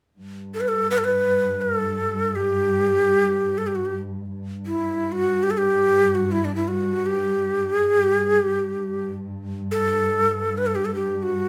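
A breathy, end-blown ney carries the melody up front with vibrato and tongued, unsteady phrasing, entering at 0.5 seconds over a dark, woody cello section that holds a low drone from 0.2 seconds. This passionate Persian modal excerpt unfolds in free time in dastgah mahur, the bowed cellos sitting far beneath the close-miked reed cane. A moderate studio reverb gives the pair a modest sense of space.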